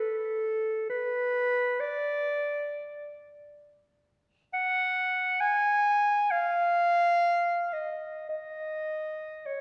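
This is a classical piece for unaccompanied clarinet, free and expressive, with a nostalgic, serene mood. A single clarinet carries the whole passage alone from 0.0 to 9.6 seconds, moving between A4 and G#5 in a classical style. Its tone is dark with a smooth top, and it sits at the front as the only voice. A wet scoring-stage reverb with a 1.8-second decay surrounds the instrument, and the listener seems placed further back in the room, giving the line a spacious, reflective halo. The short excerpt is cut from a longer piece.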